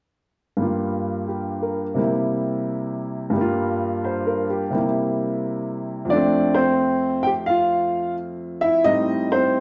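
Heard in a large, reverberant studio, a woody, boxy upright piano sits up front with audible action noise and long sustain, playing a swinging, warm, intimate solo jazz passage in F major at 87 BPM with swung eighth notes, circling between Gm7 and C7 from 0.6 seconds before moving to Fmaj7 at 6.1 seconds and Am7b5 at 8.9 seconds in this fragment of a longer piece.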